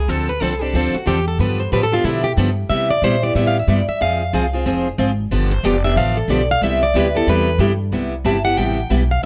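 A bright, plugged-in steel-string acoustic guitar takes a picked solo with audible finger squeak in this playful, swinging excerpt of acoustic string swing, backed up front by a second picked steel-string guitar with a concert tone and a woody, thumpy pizzicato upright bass on gut strings under light reverb.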